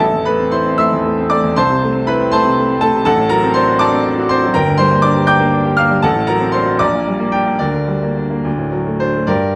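Set in a light reverb with a dark overall production, this short fragment of a longer romantic character piece features a solo grand piano that sits up front with a brilliant, open tone and long sustain, ranging from G1 to G6. Played in 6/8 with expressive rubato, the music carries a bittersweet, passionate mood. Its harmony drifts from an opening A minor colour into a darker minor-key settling at 3.0 s, arriving on a dominant chord near 8.5 s before the fragment ends at 9.6 s.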